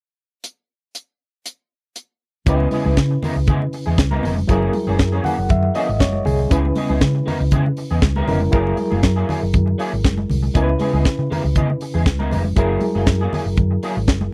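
A dry, close 1970s-style studio sound with little reverb frames this driving, danceable disco cut, taken from a longer piece and moving at 119 BPM in a straight 4/4 in C# dorian. A tight funk drum kit opens alone at 0.4 s, sitting up front with a high-tuned snare, a tight kick and hi-hat. At 2.5 s the full band arrives: a round, dark hollow-body short-scale electric bass played with the fingers, a bright, twangy picked electric guitar through a small old amp with slight break-up and ensemble chorus, an overdriven reed electric piano with a gritty, reedy tone and fast tremolo through a combo amp, and thick-skinned, medium-tuned congas tucked in the background. The harmony alternates between C#m7 and F#9 every bar, giving the groove a vamping quality. The electric piano steps forward with a fill from 5.0 to 6.5 seconds.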